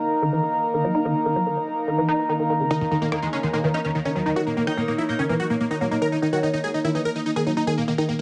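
This hypnotic, alien trance fragment at 145 BPM opens on an overtone-sweeping drone with 12-bit sampler grit and a warbling, nostalgic tape-like pad, both carrying chorus and their own reverb, before a woody, wave-folded pluck riff with chorus and digital delay joins almost at once, a huge, thick supersaw melody with phaser and dub echo arrives up front at 2.7 seconds, and a metallic, aggressive wobble bass line with dub echo adds a quiet second voice from 3.1 to 5.3 seconds, all within a lush hall under a filter sweep.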